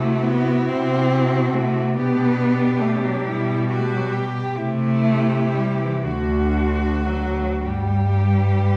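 Two expressive, up-front bowed cellos carry the bass and accompaniment with rich vibrato and portamento beneath a smooth, even, distant cello melody and a clear, focused second line in this lyrical classical excerpt for cello ensemble in G major, moving in a rubato 6/8 at 33-47 BPM through a wet recital-hall reverb heard from further back in the room, and settling onto a G chord at 7.7 seconds.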